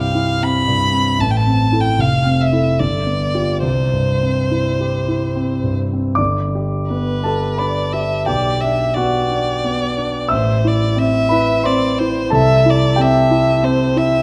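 Romantic classical duo in 3/4, shaped by rubato and a warm, lyrical mood, cut from a longer piece. A rich, bowed violin carries the melody with smooth vibrato and an even tone, while an intimate concert grand piano accompanies with deep bass and a vintage character, its action noise faintly audible. Both instruments sit up front in a wet recital hall reverb, and the harmony shifts to a new centre at 6.2 seconds.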